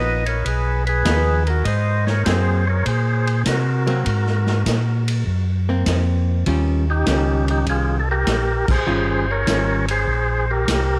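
A percussive tonewheel organ with key click and slow rotary speaker carries the bluesy, soulful melody in this swinging soul jazz organ trio excerpt, over a round, dark second organ playing the bass up front, a hollow-body archtop guitar accompanying in clean, compressed tones until 9.8 seconds, and a distant, roomy big-band drum kit with a boomy kick, all in light room reverb, with a band accent at 8.6 seconds.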